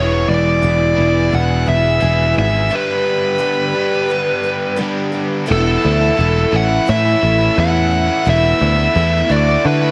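A plate-reverb sheen frames this nostalgic, open-road rock excerpt, where a dark, distorted bluesy lead guitar sings the melody up front over a shimmering, woody twelve-string acoustic, a bright, double-tracked overdriven riff guitar, a growly, foam-muted electric bass and a very quiet, floating bowed string section, with a break from 2.7 to 5.5 seconds before the chords shift through Esus4, A and Dadd9.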